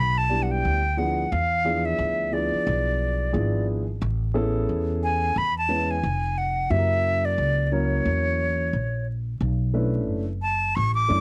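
A breathy, bright concert flute with an unsteady straight tone carries the melody over a woody, thumpy pizzicato upright bass and a dark, intimate grand piano with audible action noise, giving this mellow, smoky jazz-hop excerpt its swung hip hop feel, cassette-tape haze on the flute and piano, light reverb and vinyl crackle.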